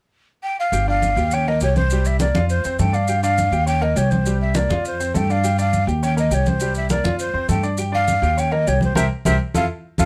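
A breathy, hollow jazz flute opens this sunny, danceable Afro-Cuban jazz excerpt at 0.4 s, carrying the melody up front in F major at a brisk 204 BPM, with vibrato and a tongued chiff. At 0.7 s the rest of the band joins: clear, smooth vintage grand piano, growly, woody pizzicato upright bass up front, low-tuned thick-skinned congas in the background and grainy maracas, all cycling through G5, Eb7, C5 and F. The sound is dry and closely miked, and the band hits an accent from 9.0 s as the harmony turns from C7 to Fmaj7.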